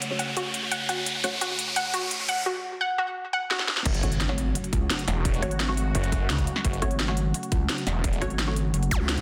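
A snarling, growling distorted saw bass bursts in at 3.9 s to lead the drop of this dark, futuristic slice of technical drum and bass, cut from a longer piece. Beside it, a pulsing, heavy wobble bass with tube saturation fills the low end. A tight electronic kick joins the drum and bass kit, whose cracking snare and crisp hats sit up front in studio reverb. Before the drop, the build-up features a bright, round analog pluck playing arpeggios through cassette tape, delay and sidechain pumping, along with a riser running until 2.5 s and a drum fill. An impact lands with the drop at 3.9 s, and a brief zap sounds near the end. Throughout, an evolving, resonant pad holds sustained chords with chorus and sidechain pumping, while a muted, deep dub chord stab recurs through phaser, analog chorus and digital delay. The master is dense and heavily limited, with moderate plate reverb lending digital ambience.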